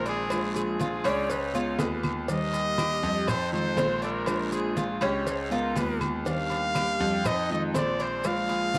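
A bright, vibrato-laced trumpet leads this relaxed, sunny Cuban son and guajira clip in Eb major at 121 BPM, over a full-bodied steel-string guitar with finger squeak, metallic tres arpeggios, a worn grand piano carrying the deep bass, a breathy, reedy jazz flute adding a second line from 1.1 to 6.1 seconds, and background congas, ringing agogo bells and timbales, raspy guiro, grainy maracas, a tight cowbell and woody claves, all in a dry, close 1970s-style studio sound.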